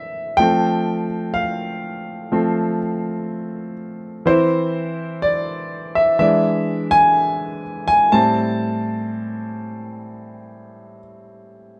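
Longing and emotional, this slow pop excerpt in A minor at 62 BPM features a clear concert grand piano playing alone from 0.0 to 11.8 seconds, spanning A2 to A5. Its tone is smooth and vintage with a deep bass, sitting up front in a moderate large studio reverb that suggests a band playing live in one room. The harmony moves from F through Cadd9/E and E7 before settling on Am7 at 8.1 seconds.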